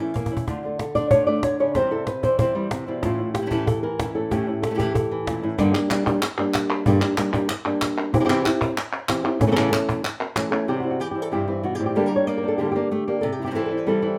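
A dark, thumb-plucked flamenco guitar carries the melody up front through this intense, mournful flamenco excerpt at 188 BPM, with a second, fingerpicked guitar adding stabs over chords such as Dm, C, A and Gm, a woody, close and dry cajon with faint snares played by soft hands driving things after a brief opening fill until 10.5 s, and crisp, saturated palmas hand claps joining up front at 5.7 s, all under light reverb.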